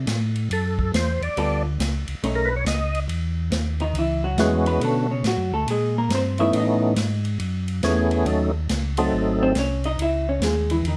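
Soul jazz organ trio in a bluesy, swinging 4/4 fragment cut from a longer piece, with a lilting swung eighth-note feel. A mellow tonewheel organ carries the bass line from the start, its round, dark, clean tone colored by vibrato, key click and a slow rotary speaker, sitting up front. A second tonewheel organ takes the melody and opens with a short solo until 3.1 seconds; its full, lightly overdriven voice brings second-harmonic percussion, chorus vibrato and its own slow rotary swirl. From 3.1 seconds a vintage hollow-body electric jazz guitar steps forward for a solo, its picked, compressed sound shadowy yet clean and close to the listener. Behind them a swinging big-band drum kit keeps time on hi-hat, ride, a medium-tuned snare and a punchy kick, recorded with a natural studio-room sound. The harmony moves through rich extended chords such as E69, Amaj7 and G#7b9, all set in light reverb.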